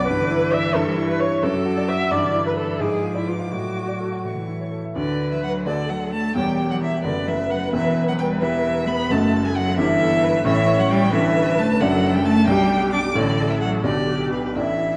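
A piano quartet opens at once in a quick, graceful classical-period movement in D major, the baby grand piano sitting up front with a clear, open tone and long sustain beneath the bowed strings. Moving at 88 BPM in a straight 6/8, the single violin carries the melody with a rich, expressive voice, its vibrato and portamento heard from a distance. The cello supplies a focused second line from close by, while the viola adds soft-attacked, expressive accompaniment with its own vibrato and slides. The harmony moves through colorful passing chords such as G#dim7 before settling on A, and a new section begins at 5.0 s on a D chord, keeping the spirited character through to 15.0 s. A moderate concert hall reverb and a dark, warm production give the whole a rounded finish, and the passage is cut from a longer piece.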